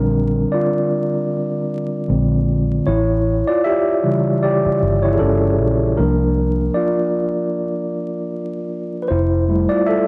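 A mellow tine electric piano and a dark, round, foam-muted electric bass open together in this nostalgic, dreamy lo-fi hip hop excerpt, set at 77 BPM in 4/4 with a lightly swung 16th feel. The up-front piano takes the lead, moving from Bb69 and Bb9 through A7 and C9sus4 to Fmaj7. The punchy, amped bass holds the low end until 9.7 s. The sound is dry and gritty, with transformer saturation, vinyl crackle and a small room's modest ambience.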